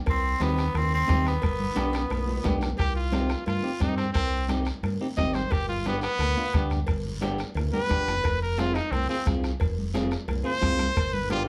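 Cumbia with a danceable, driving feel, cut from a longer piece, where a gritty, raspy tenor saxophone solos up front for the opening seconds before a bright, punchy trumpet with vibrato takes over the melody at 2.8 s, carried by a round, dark fingered electric bass, a clean hollow-body guitar accompaniment, a close, dry bombo, distant ringing congas, metal-shell cowbell and timbales in the background, and a raspy guiro, with drum fills near 1.8 s and 7.7 s and the whole band heard from further back in a moderately reverberant studio.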